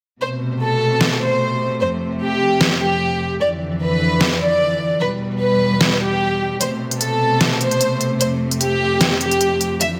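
Opening at 0.2 s on a dark, soft-attacked chamber string section holding low sustained chords through a low-pass filter beneath a sul tasto violin section singing a delayed melody in A minor, this heavy, chaotic wobble dubstep fragment at 150 BPM in a swung half-time feel brings in an up-front electronic drum kit at 1.0 s, with a deep snare and crisp hats in studio reverb, all inside a lush hall.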